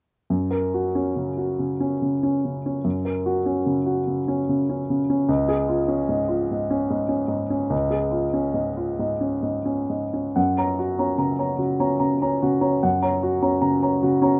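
Tender and peaceful, this short passage of neoclassical minimalist piano, cut from a longer piece, drifts in a rubato 3/4 at roughly 62-76 BPM in F# major, with a solo grand piano of smooth, vintage character and short sustain sitting up front in a moderate studio reverb, moving from F# to C# at 5.3 seconds and back to F# as a new section opens at 10.4 seconds before the playing ends at 14.4 seconds.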